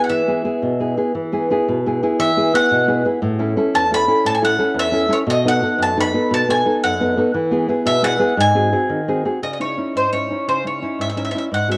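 Wistful and romantic, this Italian folk excerpt moves in a straight 6/8 at 116 BPM (dotted quarters) in E major, tuned slightly low to A4 = 438 Hz. A bright, picked bowl-back mandolin carries the melody on its doubled strings, while a dark, fingerpicked classical nylon-string guitar accompanies with audible finger squeaks. Both instruments sit up front with a cassette tape tint in a home recording bathed in moderate spring reverb, and the harmony moves through E, A and B7 before G#7 leads into a new section on C#madd9 at 9.4 seconds.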